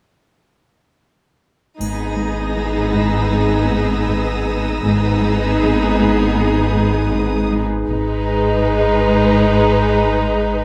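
Heard in a moderate recital hall reverb, this ominous, uneasy suspense film score cue opens at 1.8 s on a minor chord. A bowed violin section carries the melody in the background, a smooth, close second violin line holds a single pitch, and a lush viola section fills in the accompaniment. A glassy, ethereal glass harmonica sustains beating chords, high violins add an expressive upper texture, and a cello section with vibrato plays a riff until 7.7 s over a very quiet double bass section, a portamento cello bass and a deep sine sub bass drone, while a bright triangle sounds only briefly near the start and the passage moves into a new section at 7.9 s.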